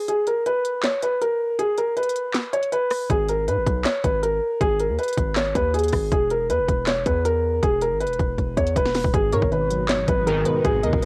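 A dark, mellow grand piano carries the melody up front in this eerie, menacing half-time trap excerpt, filtered and dulled by cassette tape, while an electronic trap kit with a hard-clipped kick, sharp snare, crisp hats, rim clicks and handclaps pushes up front beside it. A punchy, saturated 808-style bass arrives at 3.1 seconds, and after a drum fill the closing section at 9.1 seconds brings in round electric-piano-like synth keys with chorus and tremolo in the background, a crystalline wavetable pluck with analog delay, and a very quiet, blurred granular pad. A juicy, warbling polysynth with a resonant filter sweep adds a brief stab, all in a dry, lo-fi home-cassette sound.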